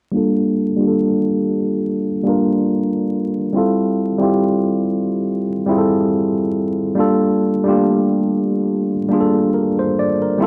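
Dark, crackling vinyl texture and a wet studio reverb frame this melancholic, reflective hip hop fragment, where a worn, slightly out-of-tune tine electric piano sits up front, clean yet boxy as if heard through built-in speakers, colored by cassette tape and a low-pass filter with a filter sweep running throughout as it comps a swung progression from Gm9 to Fmaj9 and back to Gm9 at 7.0 seconds.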